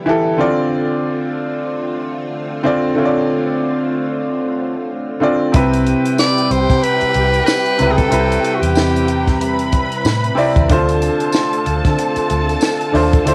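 This excerpt opens with a clear, worn baby grand piano up front, laying down accompaniment over a silky string machine that holds mellow, slow-attack chords in the background, both carrying a cassette-tape patina. It is lush 1970s-style soul in D dorian at 93 BPM in 4/4, with a lightly swung sixteenth feel and a bittersweet, cinematic mood, moving from Dm7 to Cmaj7 and back to Dm7. At 5.5 seconds the band fills in: a compact cocktail drum kit with a punchy kick and high-tuned snare, a dark, round, foam-muted electric bass, and a studio string section adding a smooth, expressive bowed second line with vibrato. A bright, close-miked tenor saxophone takes the melody up front from 6.2 to 9.6 seconds, its scooped notes and vibrato giving a pop-style solo voice, while a jingly tambourine sits far back in the mix. Light reverb and the home cassette recording lend the whole a vintage character.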